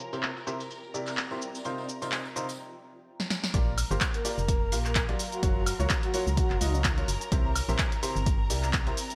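A joyful, feel-good piano house excerpt opens with a rich chamber violin section holding sidechain-pumped chords in the background, a punchy analog drum machine up front with handclaps, hi-hat, shaker, snare and woodblock, a very quiet, blurred granular cloud pad, a woody upright piano riff with subtle chorus and a tambourine in the background, as a filter sweep and drum fill build until the drop at 3.5 seconds brings in an analog electronic kick and a hollow, dark, organ-like FM bass, while a breathy flute-like synth lead sings a short melody with chorus and digital delay from 4.1 to 6.7 seconds, in a bright 1980s-style digital mix with light reverb.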